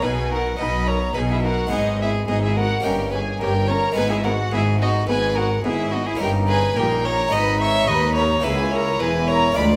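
A moderate recital-hall reverb surrounds this festive, brilliant fragment of a baroque-style concerto movement in straight 4/4 at 107 BPM, played with gut-string, period-style tone. A reedy solo violin carries the melody up front, joined above by a close, lightly vibrato upper violin section. Behind them sit a smooth-topped second violin line, dark, nasal violas, a round, dry, close-miked harpsichord and a rich cello section, while a rich double bass section joins the cellos on the bass, moving through chords such as B, G#m and D#7/G before settling on A#dim/C#.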